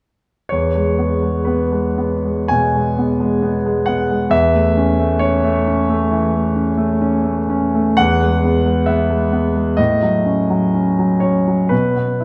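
A clear concert grand piano carries this romantic character piece alone, its deep bass and long sustain sitting up front in a natural tone. Set in E major at a slow 64 BPM in 4/4, the playing breathes with rubato, the beats stretching and pulling so the pulse never feels mechanical. The mood is passionate and warm, with the harmony resting on E, moving to A over E at 4.3 seconds, returning home, then touching F-sharp minor over A before falling away at 11.7 seconds. The piano ranges from E2 up to G#5, giving the low register real weight beneath the upper lines. A wet recital hall reverb with a 1.8-second tail surrounds the instrument, lending the sound a spacious, lingering bloom. This is a short section cut from a longer piece, lasting from 0.5 to 12.2 seconds.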